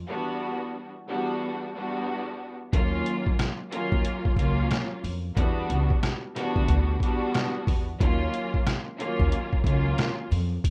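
A gritty, pitched-down sampler-style drum kit with a thumpy kick and a medium-tuned snare, hi-hat and rim click enters at 2.7 seconds and sits up front in this dark, moody boom-bap hip-hop cut at 91 BPM with a swung 16th-note feel. Beneath it, a woody pizzicato upright bass with gut strings anchors the low end, while a lush bowed string section with vibrato, coloured by cassette tape, filtering and plate reverb, drifts between Em7 and Ebm7. The rough home demo mix carries light reverb and is clipped from a longer piece.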